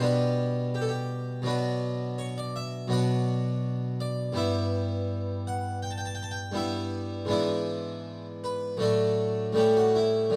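Classical, baroque-style suite movement for solo harpsichord, radiant and serene, unfolding in 4/4 with a flexible rubato feel across its 10.4-second excerpt. The French-style instrument, with its three sets of strings, sounds brilliant, full and plucked, close-miked and up front as it spans G2 to A5 through a progression that moves from G/B and Bm toward E7/G# and a closing A7. A moderate large-studio reverb surrounds the dry, present instrument, while the overall production leans dark.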